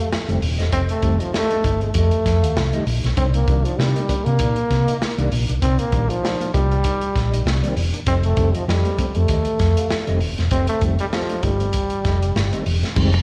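A warm, punchy trombone with vibrato carries the melody from the first second of this hypnotic funk excerpt at 98 BPM, backed by a gritty, saturated breakbeat kit with dark cymbals, a round hollow-body fingered bass, clear tonewheel organ stabs through chorus vibrato and a slow rotary speaker, and a mellow, clean electric guitar tucked in the background, all swinging over F9 and Cm9 in a live-sounding hall, before a picked semi-hollow guitar riff appears only at 13.1 seconds.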